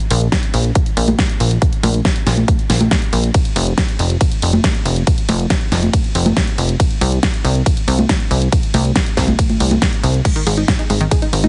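Euphoric and soaring, this uplifting trance excerpt drives along at 139 BPM in a straight 4/4, cut from a longer piece. A big-room drum kit with a huge snare, congas, crash and ride cymbals and hi-hat opens the excerpt, its hats, cymbals and percussion pumping against the sidechain inside a studio reverb, and a punchy, layered electronic kick joins it up front from 0.3 seconds. Underneath, a funky analog bass built from sawtooth, pulse and triangle waves with a touch of ring modulation plays fast-attack, decaying plucks between F1 and C2, also pumping with the sidechain. At 10.2 seconds a lush unison pluck arrives with detuned sawtooth arpeggios spanning Ab2 to Ab4, its noise layer and moving notch filter trailing into a dub echo as the harmony lands on Ab. The whole mix carries a heavily compressed, radio-like digital ambience with the top end rolled off above 10.4 kHz.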